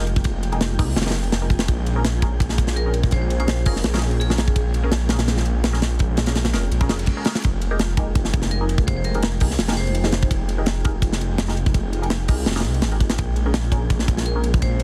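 A dense, heavily limited modern master with vinyl crackle and little reverb frames this frenetic, nostalgic drum and bass excerpt at 167 BPM in F minor, swung slightly on the sixteenths, as a tight acoustic kit with a softly clipped kick and a thick, beating detuned saw bass sit up front over chords moving between Fm11 and Bbm7. Behind them, a silky string machine with ensemble chorus and 12-bit grit holds sustained chords, muted filtered dub stabs pass through phaser, cassette tape and dub echo, and an airy, wind-like tuned noise texture breathes underneath. A metallic, ringing vibraphone played with hard mallets adds short melodic phrases from 2.8 s and 8.5 s, and again briefly at 14.3 s, through gritty dub echo, while a very quiet reverse cymbal swells from 6.9 s into the chord return at 7.4 s.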